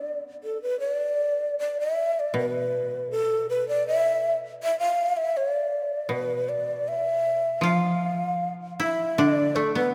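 This is a meditative, still excerpt of Japanese traditional chamber music in D kumoi, moving freely in rubato around 79 BPM in 2/4. A breathy, hollow bamboo shakuhachi carries the melody up front throughout, with vibrato and a tongued chiff. Two woody, fingerpicked kotos support it: one plays a second line that sounds briefly at the start and returns at 7.6 seconds, and a lower accompaniment enters at 2.3 seconds, all set in a long church reverb.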